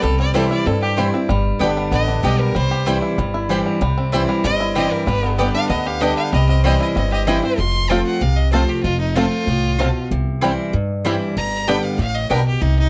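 A brisk straight 4/4 drives this bluegrass excerpt at 191 BPM in C major, with a rustic, virtuosic spirit. A clear, intense fiddle carries a solo across the whole stretch, its airy bow and light vibrato riding high over the band while the twangy, percussive banjo picks out the melody with fingerpicks. A boxy parlour-style steel-string guitar fills in picked accompaniment, and a woody mandolin with doubled strings adds stabs from 0.3 seconds, marked by a slapback echo. Underneath, a thumpy, dark upright bass with gut strings sits up front, giving the plucked low end real weight. The harmony moves briskly between C, G and F over two passes of the same section, heard in a dry, close studio sound with a 1970s character.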